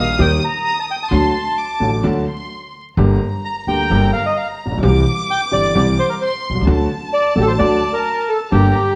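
A rubato tango in 4/4 carries a dramatic, sultry mood through this short excerpt, with the chords moving from Eb through D, G minor and C back to D. A reedy, boxy bandoneon sits up front with the melody, while a chamber violin section adds a soft, intimate second line above it, bowed sul tasto with light vibrato. A clear concert grand piano with deep bass provides the accompaniment, and a woody pizzicato upright bass anchors the low end, all set in a moderate large-studio reverb and coloured by worn cassette tape, vinyl crackle and warbly pitch drift.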